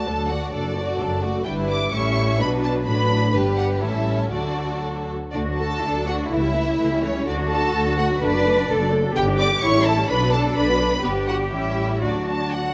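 Spirited and graceful, this brisk classical-period string orchestra movement in D major moves at 116-131 BPM in 2/4 with a rubato feel, and its opening phrase returns at 5.3 s in this short cut from a longer piece. A focused, lush first violin section carries the melody over an expressive, close second violin line, while smooth violas supply the accompaniment. Even-toned cellos and an up-front double bass section anchor the bass, all bowed with vibrato and set in a moderate scoring-stage reverb.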